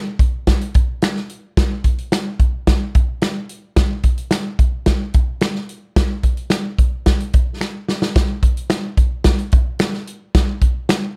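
The recording has a dark, warm production with light reverb, drawn from a longer soul piece in straight 4/4 at 109 BPM. The mood is urgent and driving, carried by an acoustic drum kit that sits up front with a natural studio-room sound: hi-hat, a medium-tuned snare and a punchy kick. From 1.0 seconds, a human finger snap joins in the background, close and dry in a short room. A drum fill from 7.6 to 8.2 seconds leads into a new section that carries the groove to the end of the clip.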